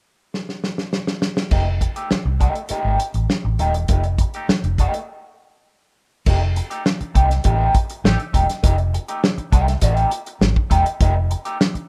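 Funky and playful, this short cut from a longer funk piece at 101 BPM in F mixolydian opens with a drum fill on a small-room soul kit with dark cymbals and a tight kick, then at 1.5 seconds a round, foam-muted fingered bass and a picked electric guitar at the edge of break-up, coloured by wah and spring reverb, settle onto an F9 groove, with a break at 5.1 seconds, all in a rough home demo mix with light reverb.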